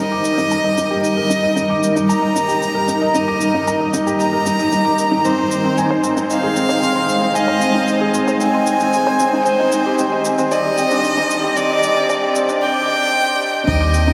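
Soaked in a huge, dreamy reverb that lingers for seconds, this excerpt from a longer piano and strings electronica piece feels luminous and hopeful. Up front, a felt-muted upright piano plays a soft, mellow riff with audible action noise, while a single violin carries the melody close and intimate, with light vibrato and an airy sul tasto bow, both touched by shimmer reverb. Beneath them, a granular cloud pad holds blurred, evolving chords that move from Eb to Ab to Cmadd9, its detuned, full-bodied tone swept by a filter as the passage builds. A produced electronic shaker ticks quietly in the background throughout. At 13.7 s a deep, round sub bass with sidechain pumping arrives alongside a brief, tape-warm electronic kick, just before the cut.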